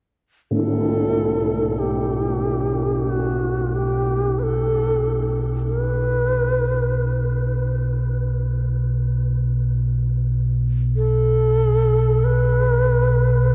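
Worn, warbling cassette tape with pitch drift and a huge ambient reverb wraps this ominous dark ambient drone, cut from a longer piece and drifting in free time over a B5 chord. A close, bright tam-tam strike sounds at 0.5 s, the same moment an airy, reedy shakuhachi enters with chiff and vibrato, its tongued melody sitting up front between F#4 and B4 inside a diffuse delay. From 0.9 s a deep, rumbling drone of slow-attack triangle and sawtooth tones sustains beneath it in its own reverb until the end.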